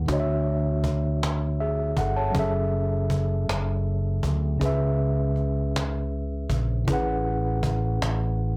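Sensual and intimate, this slow R&B excerpt sways in 6/8 at 53 BPM with a straight feel, cut from a longer piece. A mellow tine electric piano carries the accompaniment, its clean tone heard through built-in speakers, moving through lush chords from Dmaj9 to F#m9, C#m7 and finally Amaj13. Beneath it, a fretless electric bass sits low with a dark, round, amped sound, while a snappy acoustic cajon with snares enters at 0.1 seconds and stops at 8.2 seconds, catching a bit of live room. All three parts sit up front in a dry mix with little reverb. The recording itself is blown-out and overdriven, lending a gritty edge to an otherwise tender groove.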